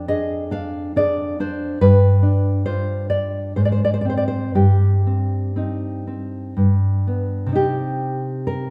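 A rubato 3/4 sway at 58-71 BPM carries this intimate, passionate romantic excerpt for solo classical guitar in C minor, its fresh nylon strings sounding deep and thumb-plucked with audible finger squeak, set up front in a moderate recital hall reverb as the harmony moves from Ddim/F through G7 and Ab to settle on C minor at 7.6 seconds.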